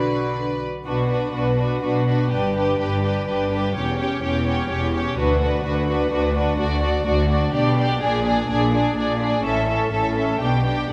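A moderate scoring-stage reverb surrounds this lively, cheerful string orchestra passage in a quick classical-period movement in three, played with a rubato feel and cut from a longer piece. A pure, floating violin section carries the melody with a smooth top, while a second, rich and more distant violin section sings a line beneath it, and a dark, intimate viola section fills in the accompaniment with light vibrato. The low end is held by a close cello section with vibrato and a warm double bass section with light vibrato, all five sections bowing sul tasto with soft attacks throughout the 10.9 seconds as the harmony turns from minor toward major around 6.6 seconds.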